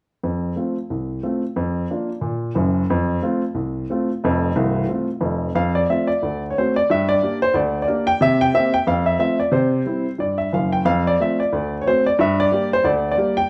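An upright piano opens the recording on its own at 0.2 seconds, launching into exuberant, playful stride jazz at a brisk 180 BPM in 4/4 with a swung eighth-note feel. The instrument sits up front and sounds woody and intimate, with the audible clatter of its action adding a natural, close-up character. Covering a span from the deep bass down at C1 up to G5, the piano moves through F major harmony, shifting from F and Bb/F into a new passage at 5.6 seconds that travels through D7, Gm and C before circling back home. A large studio reverb gives the performance a wet, roomy glow, and it sounds as though it was captured live in a single room. The piece is cut from a longer performance, and the playing carries on until 13.5 seconds, landing on a Gm chord.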